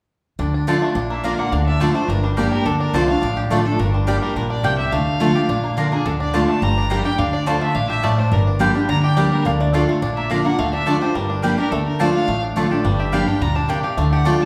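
A haunting, lonesome bluegrass piece in D minor at a brisk 212 BPM opens at 0.4 s with a twangy, fingerpicked banjo melody over a full-bodied, up-front dreadnought guitar and a growly, pizzicato upright bass. A woody mandolin soon adds stabs, and a clear, distant fiddle carries the melody with light vibrato and a smooth, even bow. Briefly, at 9.5 s, a metallic, nasal resonator slide line sounds in the background, all captured as a live band in one room with a wet, large studio reverb.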